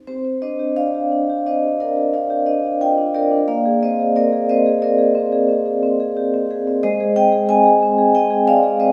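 A lone vibraphone, struck with medium mallets, plays this reflective contemporary classical piece, its metallic, ringing tone sitting up front in the sound. The playing flows freely in a rubato feel over a 5/4 metre, ranging from Ab3 up to Ab5. A slow motor vibrato gives the sustained notes a gentle shimmer. The harmony moves from Cmadd9 to Bb9 at 3.5 seconds and settles on Abmaj7 at 6.8 seconds. The instrument rings out into a lush recital-hall reverb that lends the short passage, cut from a longer work, a spacious, contemplative air.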